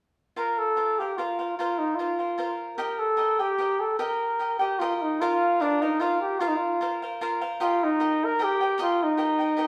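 A stone room's reverb, about a second long, surrounds this short cut from a longer piece of Mexican folk music in the mariachi tradition, with the feel of a band playing live in one space. The mood is proud and romantic, moving at 150 BPM in a straight 3/4. A mellow trumpet carries the melody in classical style as the up-front soloist, its smooth top and light vibrato ringing from D4 to Bb4. A crisp, picked acoustic cavaquinho plays accompaniment beside it, also up front, ranging from F4 to G5. Both parts play together from 0.4 to 9.7 seconds, over Bbsus2 and Eb chords, with a second section starting at 5.2 seconds on the same changes.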